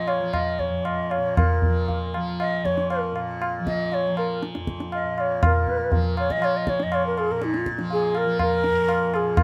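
Longing and introspective, this Hindustani classical passage, cut from a longer piece, places a breathy, mellow bamboo bansuri melody with vibrato, crisp attack and rolled-off highs up front over a softly plucked, buzzing, shimmering tanpura drone and low-tuned, ringing tabla heard close and dry, the three playing live together in a stone room with moderate reverb as the pulse gradually quickens throughout.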